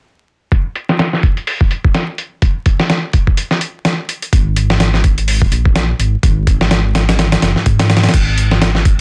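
Breakbeat with a gritty, energetic drive, this short cut from a longer piece rides a swung 4/4 groove. A dusty, sampler-style soul drum kit starts at 0.5 seconds and sits up front: a thumpy kick, a medium-tuned snare, hi-hat and crash cymbal, all compressed and tape-warm, with low-pass filtering dulling every drum. At 4.3 seconds a dark, detuned saw bass joins, rumbling deep between F#1 and G#2 with a fast attack and sustained notes, its beating detuned layers thickened by tube saturation. The drums run on alongside it to the end at 9.0 seconds. Light reverb and vinyl crackle lend a worn patina, while the dense, heavily limited modern master keeps the whole thing loud.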